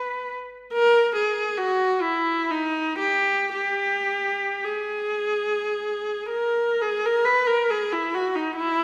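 Classical and meditative, this mournful, rubato fragment of a longer piece for unaccompanied viola unfolds in G# minor and 3/4 at a free 44-76 BPM, its single clear, smooth, even, bowed line with vibrato sitting up front between D#4 and B4 across 8.8 seconds, tuned to A4 = 445 Hz and bathed in a wet recital hall reverb over a faint mains hum.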